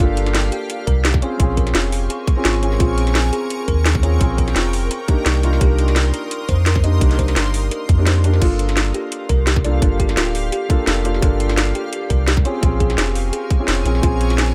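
A dry, echo-heavy mix carries this melancholic, soulful liquid drum and bass excerpt in G minor at 171 BPM: a felt-muted upright piano plays soft, intimate accompaniment through dub echo, a shimmering, ethereal pad holds chorused, pumping chords, a tine-like FM synth pluck spins arpeggios in the background, a round sine sub bass sits up front, and a tight electronic kick anchors a layered kit of cracking snare, metallic hi-hats and crash cymbal over chords moving from Gm7 through Bbm7 and Cm7.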